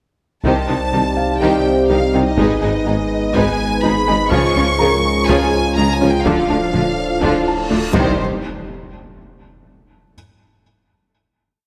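A focused, lush violin section carries the melody with vibrato high above this tense, vast cinematic cue, a complete hybrid orchestral and electronic film score piece at 124 BPM in a straight 4/4, moving through Cm, Abm, Db and Dm before returning to Cm. Beneath it, a softer second violin section and rich violas play a driving rhythmic ostinato and sustained chords, while mellow French horns and a distant, roomy trombone section hold slow swelling chords alongside a hollow, flute-like pad treated with chorus. The low end is deep and full: a clear, very quiet cello section plays a bass ostinato, and a double bass section and a solo tuba double the bass line over a sine-and-triangle sub bass drone. A bright, twangy resonator pluck pulses in arpeggios with filter sweep and phaser, a close, dry taiko ensemble beats a big drum ostinato with hard sticks, and from 1.2 seconds a muted, intimate felt piano adds sparse single notes through tape echo. 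A huge reverse cymbal rises from 7.5 seconds into a final impact hit at 8.2 seconds that rings out to 10.1 seconds, all bathed in a generous scoring-stage reverb.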